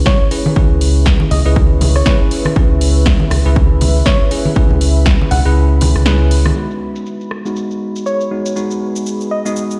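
A round, deep analog bass sits up front with sidechain pumping in this hypnotic deep house excerpt at 120 BPM in G# minor, joined by bell-like tine electric piano stabs, a gentle FM synth lead with tape echo, a punchy layered kick that stops at 5.2 seconds, a house kit and saturated congas, while a dark, detuned ambient pad with built-in reverb hovers in the background and filter sweeps on the drums and electric piano arrive at 6.6 seconds as the chords move from C#m7 to G#m7.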